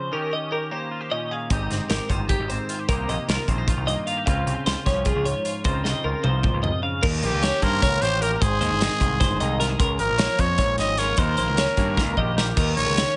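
A clean electric guitar with analog chorus and a twangy, compressed twelve-string playing arpeggios through tremolo open this playful, intricate math rock and midwest emo excerpt in Db lydian, moving in 7/8 at 304 BPM counted in eighths. At 1.5 seconds an overdriven, growling picked bass and a punchy, up-front studio drum kit with a medium-tuned snare and pumping room sound join, and a drum fill leads into the next section at 7.0 seconds. From 7.2 seconds a raspy, gritty trumpet carries the melody up front with vibrato and scooped notes, over chords such as Eb7, Abmaj7 and Db6 in light reverb.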